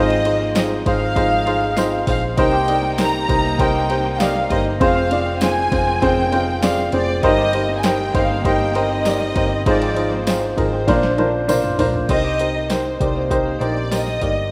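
A straight 4/4 pulse at 99 BPM drives this bittersweet piano-driven pop piece in C minor, carried by a deep house drum kit with a deep kick, punchy snare and an overdriven, layered edge, plus a jingly tambourine tucked in the background. An upright piano sits up front with a woody, short-sustained accompaniment, while a round, dark hollow-body bass played with a pick anchors the low end. A smooth, close violin section with vibrato sings the melody between C5 and Bb5, backed by a very quiet, focused string section holding sustained chords until 12.1 s. A clean, twangy electric guitar riff, compressed and scooped, sits very low in the mix. The harmony moves through Ab6, Cm7, Fm and Cm7/G, and a drum fill from 10.9 s over Bbadd9 leads into a new section that returns to Cm7 at 12.1 s. A lush hall reverb surrounds this rough home-demo mix, which is cut from a longer piece.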